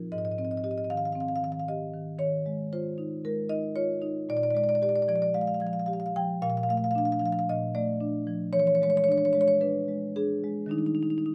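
This is a contemporary classical piece for solo marimba, playful and flowing, with a rubato feel in 4/4. It is an excerpt from a longer work. The marimba, played with medium mallets, sounds warm and up front across its span from Ab2 to G5 through the full 11.3 seconds, captured with close, detailed microphones in a dry room. Its harmony moves through Abmaj7, Eb11, Bb6, F6/Bb and E7 before settling on Ebmaj7 at 10.7 seconds.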